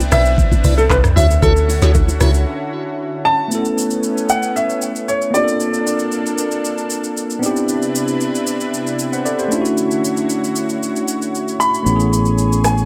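Amapiano at 115 BPM in A major, this relaxed, warm excerpt opens on a drop where a deep, round log drum bass, bright bongos and congas, and piping tonewheel organ stabs with slow rotary swirl and tape echo sit beneath an intimate grand piano melody and a lush, detuned unison pad pumping with sidechain and chorus. After a brief break at 2.5 s, a clean tine electric piano enters at 3.5 s as the smooth R&B kit's knocking kick, woody snare, metallic hats, handclaps, rim clicks, shaker and toms carry on over rich ninth and add-nine chords. A punchy fingered electric bass arrives at 11.9 s under a light reverb.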